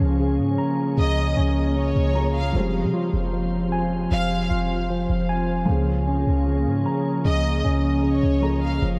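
A half-time hip hop groove at 153 BPM in 4/4 carries this menacing, melancholic fragment of a longer piece, moving between Db6 and Fmadd9 chords across its nine seconds. Up front, a deep, boomy 808-style bass with a sine tone, fast attack and dark decay anchors the low end, while a mellow tine electric piano spins clean, direct arpeggios touched with subtle chorus and delay. Behind them, a glassy FM pad holds ethereal sustained chords with a slow attack, long release, ensemble chorus and its own reverb. Further back, a felt-muted upright piano adds soft, intimate accompaniment, its thick felt and audible action noise giving it a hushed, shadowy character under an ensemble chorus. A lush, distant violin section carries an expressive bowed second line with vibrato and delay, entering at 1.0 s, dropping out at 4.5 s and returning at 7.3 s. The whole mix is soaked in a huge ambient reverb with an 8.1-second tail, giving the piece a dreamy, cavernous atmosphere.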